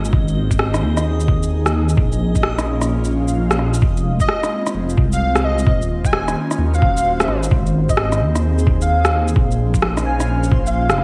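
Ghostly and melancholic, this future garage excerpt moves at 130 BPM in 4/4 with a swung 16th feel, as a breathy, chorused pad holds slow-blooming chords over a deep, rumbling detuned saw bass, both pumping against the sidechain, while up-front electronic shaker and rim clicks carry gated reverb and a muffled, tape-softened kick thumps beneath, dropping out between 2.9 and 3.8 seconds. A faint reversed granular texture swells in the background, and from 4.2 seconds an airy, dreamy lead with vibrato, delay and 12-bit sampler grit floats above the chords moving through Ab, Bbm, Fm and Ebm7. The bright 1980s-style digital sheen sits in a lush hall reverb dusted with vinyl crackle.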